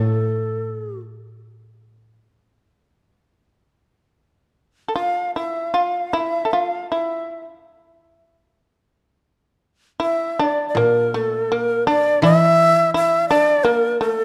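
A dark, reverberant stage sound frames this calm, austere excerpt of Japanese chamber music in A miyako bushi, moving in a rubato 2/4 around 74-85 BPM, where an up-front, breathy, reedy bamboo shakuhachi carries the melody with vibrato and lifted highs, a buzzing, plectrum-plucked fretless shamisen adds a percussive second line, and a mellow, woody, dry koto accompanies low in the range, all three opening together at 0.0 seconds before the koto falls away by 2.2 seconds and returns at 10.7 seconds for the closing section.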